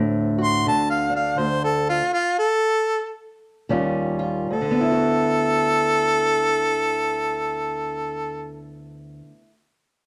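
A dark, warm production with moderate studio reverb frames this laid-back, soulful acoustic country blues fragment in D mixolydian, swinging gently in 4/4 at 72-85 BPM and slowing down over its first 4.5 seconds. A boxy, parlour-style fingerpicked steel-string acoustic guitar accompanies, while an up-front harmonica with plate reverb leads in a clear, jazzy solo of light vibrato, tongue slaps, soft attacks and scooped notes. A stop from 1.4 to 3.7 seconds breaks the flow before an Eb9 chord moves the piece into a second section that settles on D6/9.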